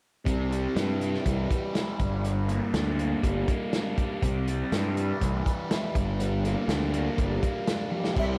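The recording has an echo-heavy mix with light reverb and a studio ambience, giving this excerpt of psychedelic rock a trippy, hypnotic haze. A double-tracked fuzz guitar carries the riff up front, picked and distorted with a phaser on it, while a punchy, overdriven electric bass sits alongside, played direct and through an amp. The breakbeat drum kit sounds crunchy and gritty: it is a small-room acoustic kit with dark cymbals, a tight kick, a medium-tuned snare and a rolled-off top, and it plays a fill around 7.9 seconds. The harmony moves between C and Gm in a straight four-beat feel. At the very close, near 8.2 seconds, a breathy concert flute with vibrato and a soft attack touches a single high note, while a reedy pedal harmonium holds mellow, boxy chords underneath.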